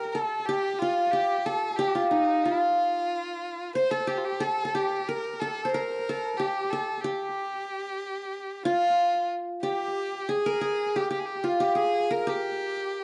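A short, reverberant studio recording with a dark top end opens onto a hypnotic, melancholic Turkish makam piece in G makam ussak, moving at a straight 91 BPM in 4/4. Up front, a bright-edged acoustic qanun carries the melody with fingerpicks on its triple strings, bathed in plate reverb and analog delay. A close, bowed solo violin sits softer beneath it as a second line, its warm tone shaped by vibrato, gentle attacks and expressive portamento, while the piece moves into a new section at 9.6 seconds.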